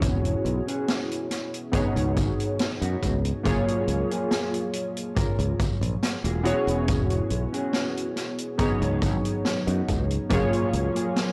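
A slow, straight 4/4 pulse at 70 BPM sets a nostalgic, dreamy vaporwave mood in F# major, with a boomy, mid-forward kick and a street-band kit of hi-hat and medium-tuned snare giving the beat a rolled-off, small-room character. The modern bright fingered electric bass sits up front, growly and tube-saturated, running from E1 to F#2 until 10.9 s. Warbly lo-fi synth keys carry the accompaniment, a detuned blend of triangle, sawtooth and square wave with a sub octave, ring modulation and a filter sweep, their fast-attack, decaying notes washed in lush chorus and analog delay. Further back, a dark, clean mellow electric guitar plays a fingered riff between A#3 and A#4, coloured by chorus, delay and vintage 12-bit sampler grit. The harmony drifts through E69, C#9sus4 and F#maj9 twice over this roughly 11-second excerpt, framed by light reverb and a dry, gritty hardware sound with transformer saturation.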